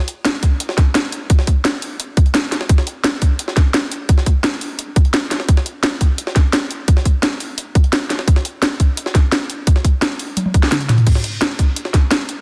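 An overdriven electronic kick drum sits up front, tight and punchy in character, entering at 0.4 seconds alongside a layered drum and bass kit with a cracking snare, bright hats, crashes and toms that carries its own overdrive and the sound of a small room. Behind them, a gritty, pitched-up jungle sampler-style kit adds a high-tuned, soft-clipped snare and filtered hi-hats with a tape-like warmth. This aggressive, tense drum and bass excerpt runs at 172 BPM in a straight 4/4 with light digital reverb and a dense, heavily limited master, and a drum fill breaks through at 10.4 seconds.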